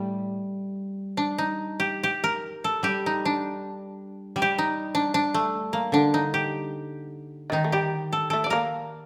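A fingerpicked koto carries the melody up front in this short excerpt of Japanese traditional chamber music, its dry, woody tone ranging from G3 to D5 over a second koto holding the lower accompaniment. The mood is solitary and austere, moving freely in rubato around 71-81 BPM in G hirajoshi. A plectrum-plucked shamisen adds a buzzing, percussive second line at the very start and again from 7.5 to 8.9 seconds, all set in the moderate reverb of a recital hall.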